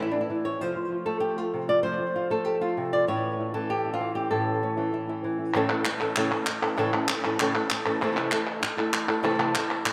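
A fingerpicked flamenco guitar carries the fiery melody up front, its finger squeaks audible through a touch of delay, while a second, thumb-plucked flamenco guitar sits in the background with stabs colored by analog chorus and delay. The harmony moves from A to F and back to A before crisp palmas hand claps join up front at 5.5 s, later shifting to C6, and a long plate reverb bathes this intense, straight-feel flamenco in a dreamy haze. The passage is cut from a longer piece.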